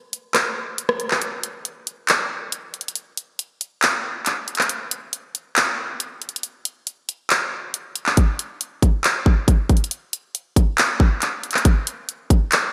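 A brooding, melancholic half-time hip hop fragment at 138 BPM opens with a brief break from the up-front electronic trap drum kit of handclaps, bright hi-hats, rim clicks and a hard-clipped kick drum, treated with gated reverb, before the kick drops out from 1.2 to 8.2 seconds and then returns, all set in a lush hall and a bright 1980s-style digital sheen.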